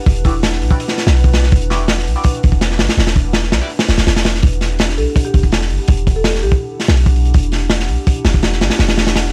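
A crunchy, up-front breakbeat of kick, snare and hi-hat drives this frenetic yet atmospheric drum and bass with a deep, boomy 808-style bass, while a warbling, lo-fi tape-like pad holds dark sustained chords with chorus and sampler grit in the background, a nasal, band-passed chord stab with phaser and dub echo sounds until 3.7 s, and a buzzing, woody marimba adds brief melodic touches that return at 5.0 s, the whole carrying vinyl crackle and transformer saturation.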